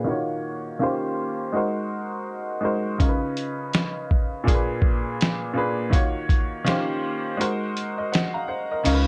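A bright, woody upright piano opens this nostalgic, melancholic lo-fi hip hop excerpt, playing accompaniment chords in Eb minor at 82 BPM in 4/4 with a swung sixteenth-note feel. The piano sits up front with an intimate, worn character: audible action noise, slight detuning and long sustain, all softened by cassette-tape coloring and a low-pass filter that sweeps across the opening passage. At 3.0 seconds a sampler-style drum kit enters with a thumpy, muffled kick, a medium-tuned snare, hi-hat and crash cymbal, pitched down, compressed and overdriven, as if re-recorded in a small room. The harmony moves through lush extended chords such as Ebm9, Eb13, Ab9, Db9 and Bb7b9 before circling back. The kick drops out at 8.8 seconds, and at 8.9 seconds a deep, thick, saturated sub bass arrives on a sustained Db2 just as the excerpt is cut off, all set in a moderate studio ambience.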